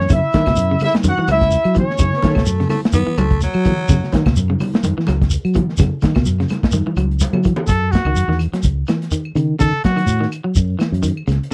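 A short, hypnotic and driving afrobeat excerpt opens with a horn section carrying a brief melody up front, a distant, roomy trombone beneath it, and a crunchy breakbeat kit with a tight kick and a gritty, saturated tone. A fingered electric bass sits forward, round and punchy. Throughout, an electric guitar at the edge of break-up plays twangy picked arpeggios. Shekere, claves and congas fill out the percussion: the grainy shekere is close and dry, while the woody claves and the ringing, soft-handed congas sit further back. A breathy, raspy baritone saxophone takes a second line around 2.2 seconds, and after a drum fill a bright trumpet steps up for a solo at 7.7 seconds as the congas drop out. The sound is dry and close, like a 1970s studio recording, with a light swing on the sixteenths.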